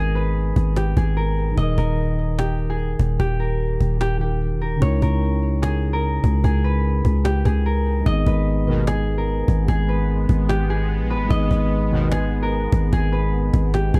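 Eerie and hard-hitting, this half-time trap hip hop excerpt sets a ringing, thumb-plucked concert harp melody over a mellow tine electric piano heard as if through its built-in speakers, a growling, buzzy 808-style bass pushed up front, and a woody, close cajon with faint snares entering at 0.2 seconds, before a sweeping, detuned resonant pad with chorus enters in the background at 8.8 seconds alongside bold, fat analog synth brass stabs with chorus, in a dark small-room production.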